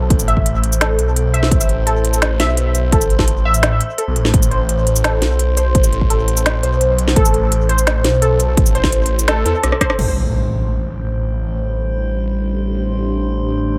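Half-time drum and bass with a tense, heavy mood, where a warbly, lo-fi detuned pluck plays arpeggios over a swirling, thick phased saw bass, an eerie metallic drone, a tape-warm electronic kick and an overdriven kit of woody snare, crisp hats, rim click, shaker and crash cymbal, until a drum fill at 9.6 seconds leads into an electronic impact at 10.0 seconds and, as the bass and drone carry on, a deep, moody ambient pad with a filter sweep and sidechain pumping enters at 11.7 seconds, the whole mix echo-heavy under a moderate spring reverb.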